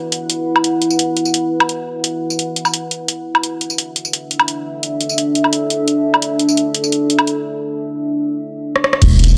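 Dark and cinematic, this half-time drum and bass excerpt at 172 BPM sets a deep, moody detuned sawtooth pad with chorus, reverb and sidechain pumping against an up-front drum kit of bright hats, crash, rim click, tambourine and woodblock, breaking at 7.6 seconds and filling at 8.8 seconds before a saturated sub bass, a knocking background kick and a very quiet sub drop hit together at 9.0 seconds in a roomy echo-chamber ambience.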